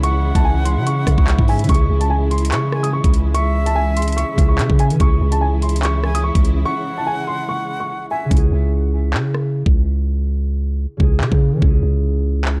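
Ominous and cold, this drill excerpt in C# minor moves at 145 BPM with a half-time feel, built on a knocking, up-front electronic drum kit of kick, metallic hi-hats, handclaps and rim clicks, and a deep, sine-toned 808-style bass that hits fast and decays long under a thumb-plucked, ringing concert harp. A boxy, mellow grand piano carries the melody high above a breathy, reedy flute with tape echo and a distant, lush bowed string section, all three dropping out at 8.3 seconds after a break from 6.7 seconds, and from there the hi-hats fall silent while harp, bass and the rest of the kit carry on to 12.6 seconds. The production is dry and dark with a faint mains hum.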